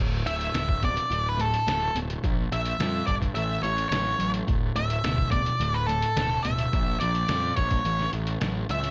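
Classic rock with a sunny, driving mood, this short cut opens with a crunchy, double-tracked overdriven guitar riff and a round, up-front fuzz bass, both picked, moving through D5, Bb5 and A5. From 0.3 seconds, a dark, distorted octave-fuzz lead guitar carries the melody up front. A lo-fi sampler-style drum kit joins at the same moment with a thumpy kick, fat snare and hi-hat, sounding compressed, pitched down, muffled and tape-warm, as if re-recorded in a small room, all within a straight 4/4 feel and light reverb.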